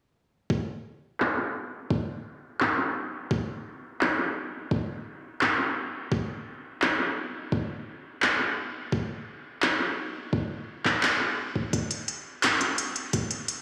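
A swung half-time groove drives this tense, spacious drum and bass excerpt: a gritty, thumpy, pitched-down electronic kick enters up front at 0.5 seconds, joined at 1.2 seconds by an industrial kit of handclaps and smooth hi-hats, both re-recorded in a large room, while a filter sweep runs across the drums and a huge stone-room reverb, like a big sound system played in a bare room, hangs around them.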